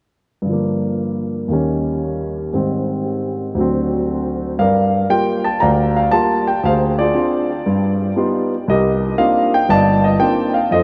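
A swinging 4/4 lilt drives this smoky solo jazz fragment, cut from a longer piece and played on a concert grand piano that sits up front with a warm tone, deep bass and a touch of tape echo. The harmony moves through Gm7, Eb7, Abmaj7 and D7 before a new passage begins at 4.6 seconds, running through Gm7, Dm7b5, G7b13 and Cm11. A huge, wet ambient reverb soaks the mix in a dreamy haze.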